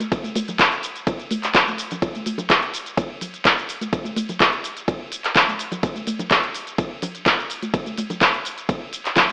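A straight house groove drives this short excerpt, cut from a longer piece, with an expansive, driving mood. A pop drum kit sits up front with handclaps, crisp hi-hats, ride cymbal and shaker, its layered electronic sound polished and produced. Congas and bongos play with soft hands throughout, warm, close and dry in tone, pumping under sidechain compression. An overdriven electronic kick enters at 0.1 s, deep and layered, with the roomy character of a large space. The whole mix carries an AM radio colouring, wrapped in a moderate digital room reverb.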